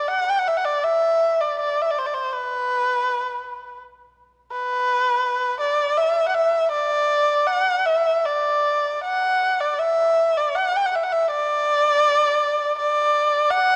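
A lone bowed erhu, dark, nasal and slightly boxy, sits up front and carries a wistful, pastoral Celtic folk melody in D mixolydian, ranging from B4 to G5 with expressive vibrato and portamento. The rubato phrasing moves in a loose 3/4 at around 76-84 BPM, with the instrument tuned to A4 = 441 Hz. Moderate concert hall reverb gives the 13.8-second excerpt a sense of space, set against a warm, dusky production and a faint mains hum.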